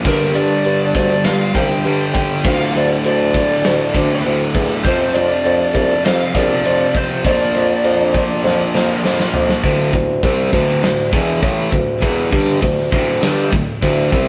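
Hard rock with an aggressive, heavy mood, cut from a longer piece: a bright, high-gain distorted guitar and an overdriven semi-hollow guitar share a low riff, while a mellow, close-miked bassoon with light vibrato carries the bass line and a gated 80s kit drives with a punchy kick and bright cymbals. A lo-fi lead guitar through a small cranked amp plays the melody with analog delay, shadowed by a quieter second lead line in the background, until both stop at 9.0 seconds. A drum fill from 8.4 seconds leads into a new section at 9.6 seconds, all set in a rough rehearsal-room recording with a moderate stone room reverb.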